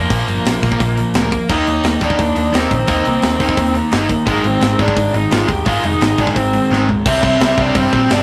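A rough rehearsal-room recording with tube saturation and a moderate studio ambience frames this upbeat, rowdy punk rock clip at 173 BPM in straight 4/4. A smooth, dark overdriven lead guitar carries the melody over a bright, double-tracked crunchy guitar riff, a very quiet distorted guitar, and a round, punchy picked bass. Meanwhile, a tight metal drum kit sits up front with a high-tuned snare and a rolled-off top. A biting overdriven guitar joins in the background at 1.5 seconds as the chords move from Bb through Eb5 and Ab, and a drum fill at 6.7 seconds leads into a new section on C at 7.1 seconds.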